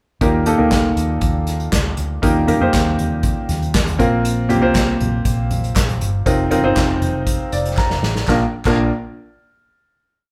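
Anthemic and uplifting, this short piano-driven pop piece in Bb major moves at 119 BPM through a bridge of Eb, Bbsus2 and F7sus4. A clear, woody upright piano sits up front with close-voiced pushed chords, a dark, foam-muted vintage electric bass holds a round, sustained line with slides, and an unplugged drum kit played with bundle sticks stomps out a four-on-the-floor pop beat with a punchy kick and a snare layered with clap. A very quiet, crisp group handclap joins on the backbeat at 4.8 s, piano and drum fills lead into a final Bb chord at 8.3 s, and a moderate large studio reverb gives the sense of a band playing live in one room.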